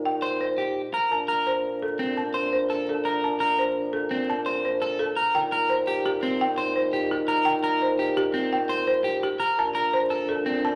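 Bright and hypnotic, this minimalist classical pattern piece in 6/4 at 170 BPM in Bb major sets a woody, hard-mallet folk marimba melody over slightly broken-up, up-front electric guitar arpeggios, a dark French horn second line with light vibrato, and a distant, roomy bassoon holding Bb2 in the bass, all cycling between Cm7/Bb and Bbmaj7 in a reverberant recital hall with vinyl crackle.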